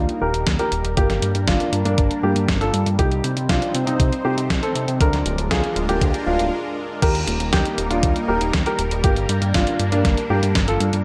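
This short excerpt of italo disco opens at once with a dark, worn grand piano carrying the melody up front, its intimate tone softened by a low-pass filter and tape echo, with audible action noise and a short sustain. Beneath it, a lush unison pad holds sustained chords, thick and bright with chorus and phaser, while a filter sweep moves through it over the first 7.0 seconds. A fat analog bass, detuned and mellow with a moving notch, anchors the low end, and a clean 12-bit digital drum machine adds crash cymbal, hi-hat and a fat snare under gated reverb, joined at 0.5 seconds by a thumpy electronic kick. At a steady 119 BPM in straight 4/4, the harmony cycles through Eb, Gm, Cm and Bb7/D, and a brief break at 6.5 seconds leads into a second section where the progression returns to Eb and Gm. The mood is melodramatic and nostalgic, set in light reverb with a sampler-style, small-room character on the drums.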